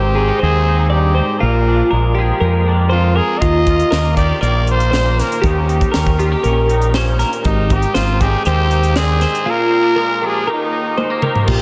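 Soaked in a huge ambient reverb, this dreamy, wistful yet playful slice of math rock and midwest emo moves at 119 BPM in Eb major, cut from a longer piece. A raspy, growling trumpet with light vibrato and analog delay carries the melody over a twangy electric guitar's chorused accompaniment, bright twelve-string electric guitar arpeggios bathed in spring reverb, and a round, overdriven fingered bass sitting up front. A crisp fusion kit with a high-tuned snare and punchy kick enters at 3.4 s, and a drum fill arrives at 11.0 s as the chords settle on Eb.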